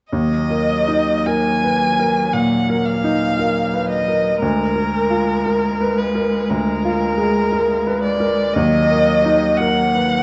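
The recording sits in a wet recital hall with a reverb tail of about 1.5 seconds, and the production is dark, with nothing above 8.0 kHz. This slow, elegiac and melancholic romantic movement for piano trio is cut from a longer piece, and it moves at 57 BPM in 4/4 in Eb minor with a rubato feel, tuned to A4 = 439 Hz. A single bowed violin carries the melody between Bb4 and Ab5, its tone rich and focused with vibrato, placed up front yet with a distant quality. A lone bowed cello plays a smooth, even second line between Gb3 and Ab3, also with vibrato. The baby grand piano accompanies from D2 to Cb5 with a bright, brilliant, natural tone and long sustain, sitting up front as the harmony moves from Ebm to Bb7/D at 4.4 seconds and returns to Ebm at 8.5 seconds.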